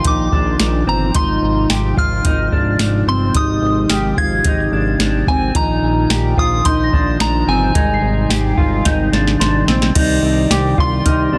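A soft vintage rhythm box with a deep kick, crisp snare, metallic hats and tambourine sits up front in this dreamy, ethereal dream pop excerpt at 109 BPM in Ab lydian, under a fat, detuned sawtooth analog bass, a dark, clean electric guitar playing arpeggios through lush chorus and tape echo, a pure, warbling FM synth bell melody, mellow flute-like tonewheel organ chords on a slow rotary speaker, and a delicate celesta entering at 1.7 seconds, with a drum fill at 8.9 seconds leading into a new section at 10.0 seconds over chords moving between Bbsus4, Ab6 and Abmaj7.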